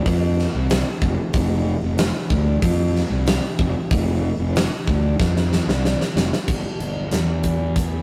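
Classic rock cut from a longer piece at 94 BPM, confident and driving, with a fuzz-soaked, round, overdriven fingered electric bass and a huge, up-front arena drum kit of bright cymbals, punchy kick and medium-tuned snare in a pumping hall, both playing from 0.1 seconds through a drum fill at 5.2 seconds into a new section at 6.5 seconds, all captured as a rough rehearsal-room recording with warm saturation and moderate studio reverb.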